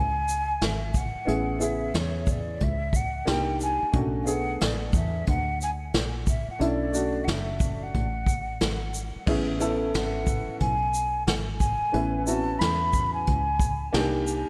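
A swung 90 BPM groove in 4/4 drives this mellow, cool jazz-hop fragment, where brushed drums with dark cymbals and a punchy kick enter at 0.3 seconds under a breathy, hollow flute melody with vibrato and slapback echo, a woody, slightly detuned upright piano with short sustain moving through Amaj9, Cm7 and Bm7 chords, and a round, foam-muted dub bass, all in a small room with light reverb.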